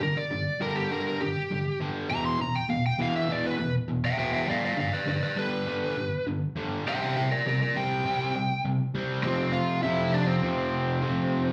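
At 201 BPM in a straight 4/4, this upbeat, rebellious punk fragment in G major charges ahead from a longer piece, caught live at a gig through the venue's PA with a touch of club reverb. A distorted, double-tracked electric guitar holds down the riff in the low range from E2 to C4, sounding bright, picked and compressed, with slapback echo, and sits up front throughout. Above it, an overdriven electric guitar carries the melody between C4 and C6, its picked, compressed tone warm and forward, also with slapback echo. That overdriven guitar takes a solo from 0.0 to 9.2 seconds as the harmony moves through G5, E5, G and C5. At 9.2 seconds the music shifts to a new section on F5, and both guitars keep playing until the cut at 11.5 seconds.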